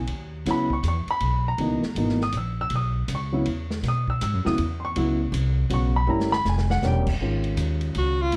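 A swinging 3/4 pulse at 160 BPM drives this open, hypnotic modal jazz excerpt in F# mixolydian, where a dark, mellow baby grand piano with audible action noise comps over growly, woody pizzicato upright bass and a punchy, rolled-off drum kit with dark cymbals, the drums fill from 6.1 to 6.8 seconds, and a clear, present tenor saxophone enters at 8.0 seconds as the harmony moves from F#9sus4 through Edim7 to Ab7sus4, all in a light reverb.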